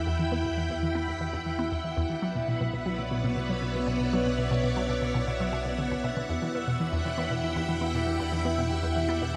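Lush, bright string-machine chords with ensemble chorus and shimmer reverb open this hypnotic, expansive excerpt of sequencer-driven ambient space music at 118 BPM in E dorian, joined at once by a squelchy, resonant blip-pluck riff through phaser and delay, a fat analog sawtooth bass, a very quiet, ringing concert harp playing arpeggios and a bubbling stepped-filter texture with chorus and shimmer in the background, all inside a concert-hall reverb as the harmony moves from Emadd9 to Bmadd9 at 2.2 seconds and back at 6.3 seconds.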